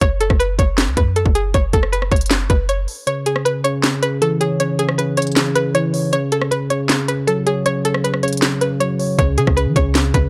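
A twangy, string-like resonator pluck carries the melody up front, its bright, chorused tone shaped by a low-pass filter, in this menacing, hard-hitting trap excerpt at 157 BPM with a half-time feel over F#5 and C#m chords. A crisp electronic drum kit of sharp snare, handclaps, rim clicks and hi-hats punches hard, while a deep, boomy 808-style bass drops out at 2.9 seconds and a hard-clipped kick follows at 3.1 seconds, when a mellow tine electric piano with subtle chorus slips in. The bass and kick return at 9.2 seconds in a dry, gritty hardware recording.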